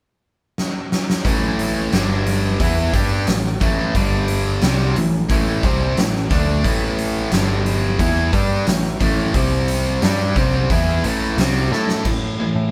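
A punchy, up-front arena drum kit with a fat snare and bright cymbals opens this driving, sunny classic rock excerpt at 89 BPM with a fill at 0.6 s. From 1.2 s a biting overdriven guitar plays a riff over A5 and G5 chords with a brief turn to C5, underpinned by a growling overdriven picked bass and joined at 1.3 s by a tight distorted guitar. The band is captured together in one room with moderate reverb until another drum fill at 11.7 s.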